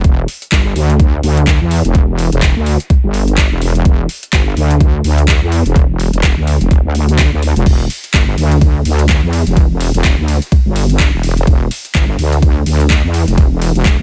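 A steady pulse at 126 BPM drives this gritty, aggressive bass house clip, with a 58% swing on the 16ths giving the groove a shuffled bounce. An overdriven electronic kick sits up front, its layered, knocking punch anchoring all 14 seconds of the clip. A garage drum kit sits further back in the mix with crash and ride cymbals, handclaps and metallic hi-hats, also pushed through overdrive. In E minor and tuned to A4 = 445 Hz, the wobble bass moves between E1 and E2, a heavy, detuned unison blend of sawtooth and sine with a fast attack and sustained tone, thickened by chorus and tube saturation and pumping through sidechain compression. The room sound is dry, and the whole passage plays as one continuous section cut from a longer piece.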